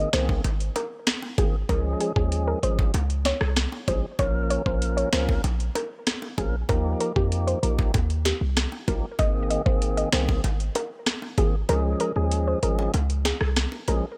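An overdriven electronic drum kit sits up front in this bouncy, summery dancehall cut from a longer piece, its knocking kick, sharp snare, metallic hats and rim click carrying vintage 12-bit sampler grit and the sound of a small room. A deep, boomy 808-style bass with a fast attack and mellow decay holds the low end just as prominently, while tight, high-tuned bongos, struck with hard hands, sit further back. A fat, clean tonewheel organ supplies the accompaniment through a slow rotary speaker, its vibrato and key click adding character. On top, a soft, round pluck with a dark, filtered edge carries the melody, coloured by chorus and tape echo. The straight groove moves through Abadd9, Db, Bbm and Ebadd9 inside a digital ambience, and the kick drops out at 11.7 seconds for the final stretch.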